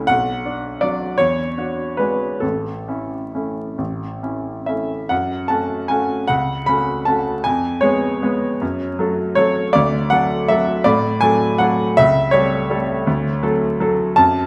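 A solo baby grand piano opens this graceful, sparkling classical waltz in 3/4, played up front with a bright, brilliant tone, short sustain and a flexible rubato feel, and tuned slightly low to A4 = 438 Hz. Around 5.1 s it moves into a new section in F# minor with a darker harmonic colour, spanning from deep bass notes up into the upper register. The piano sits in a wet recital hall reverb over vinyl crackle, and the passage is cut from a longer piece, ending at 14.5 s.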